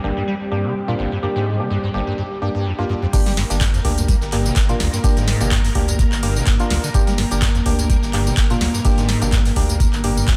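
Acid house at 126 BPM in G minor, a trippy, gritty excerpt from a longer piece, where a squelchy, resonant acid bass riff with a filter sweep, lush vintage string-machine chords, hollow percussive organ stabs and a faint breathy pad float in a dreamy, reverb-soaked hall until the drop at 3.1 seconds brings in a deep overdriven kick, a booming analog drum machine with crisp snare, metallic hats, handclaps, tambourine and crash, a very quiet tape-gritty breakbeat kit, and a thick saturated sub bass, as the pad falls away and the strings, acid bass and sub pump with sidechain compression.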